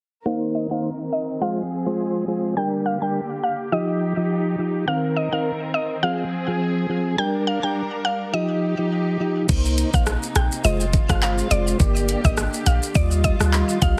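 Dancehall in C minor at 104 BPM with a hypnotic, tough feel, this excerpt opens on a woody, round mallet-like synth pluck melody over a mellow, flute-like tonewheel organ with slow rotary and sidechain pumping, and lush, dark bowed strings, all under a filter sweep through a Cm7–Fm–Gm–Ebadd9 cycle, until at 9.5 seconds a deep, boomy 808-style bass and an up-front, overdriven pop drum kit with a knocking kick, handclaps, rim clicks and shaker arrive, the whole thing carrying a heavily compressed radio sound.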